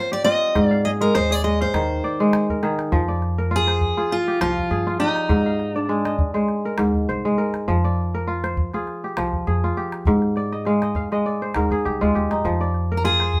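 Up-front, ringing kora arpeggios run through this flowing, reflective cut from a longer piece of West African string and xylophone music, with a crisp yet mellow tone and a fill of their own at 10.4 seconds. A warm, picked dreadnought steel-string guitar carries the melody, playing a solo over the opening seconds before dropping out at 6.1 seconds and returning briefly at the close. A small, close and dry calabash and a woody pizzicato upright bass fill out the lightly swung groove over Ab and F minor chords, all heard as a band playing live together in one room with moderate studio reverb.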